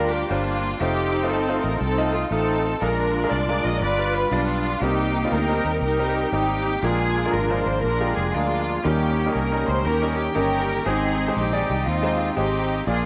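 Muted, con sordino strings carry the melody up front with a veiled, dark vibrato in this reverent, hopeful uptempo gospel excerpt at 119 BPM, swinging in 4/4. A clear, open concert grand piano accompanies, and a round, foam-muted fingered electric bass sits up front with transformer saturation. At 6.8 s a very quiet, mellow tonewheel organ enters with flute-like sustained chords, key click and a fast rotary speaker, all set in a moderate echo chamber reverb.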